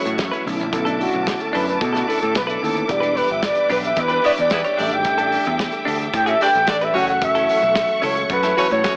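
Heard through a thin AM radio filter with light reverb and a small-room ambience, this sultry, glamorous disco excerpt in E dorian moves at 111 BPM. A breathy, distant jazz flugelhorn carries the melody up front with light vibrato, scooped notes and tape echo, over a twangy, compressed clean electric guitar with subtle chorus, a mellow tine electric piano in the background, and a lush bowed string section with portamento. A round, overdriven picked bass and a gritty, saturated soul drum kit with a tight kick hold the groove, and a punchy horn section adds octave-doubled stabs from 4.2 seconds as the chords pass from Bm11 through Em7 and A7sus4 to F#m7.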